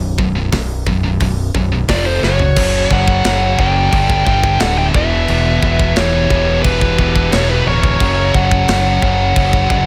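A dark, high-gain lead guitar carries the melody with digital delay from 1.9 s, shadowed by a quieter second lead line, over a heavy 88 BPM metal groove in 4/4 built from a bright, distorted riff guitar, a sludgy overdriven guitar in the background, a growling fingered bass with a direct, amped edge, and a tight studio drum kit with a rolled-off top that enters at 0.2 s and plays a short fill as the brooding chords move through B5, F5, F#5, G5, Em and back to F#5 in this fragment of a longer piece.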